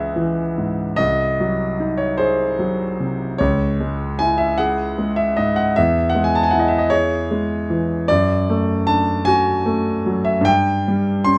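In a rubato 6/8, this brief cut from a longer romantic classical nocturne has a solo concert grand piano, natural and up front with a deep bass, spin a wistful, melancholic line over shifting minor-key harmony in a moderate studio reverb.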